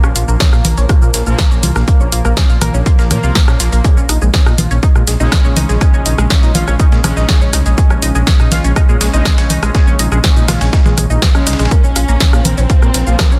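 A punchy, layered electronic kick sits up front, joined by a deep, rumbling detuned saw bass and a punchy analog drum machine with congas, shaker, rim click, hi-hat and snare, plus a very quiet, gritty sampler-style kit, to drive this dramatic melodic techno fragment over a Bbm to Dbsus2/Bb progression. Tight, wave-folded sequenced arpeggios with phaser and chorus sit alongside bold, brassy analog synth stabs in the background, both pumping against the kick and trailing dub echoes in a dry, dense, heavily limited mix. At 11.7 seconds a smooth portamento lead and a lush bowed violin section enter together in the background, adding vibrato-tinged expression before the cut.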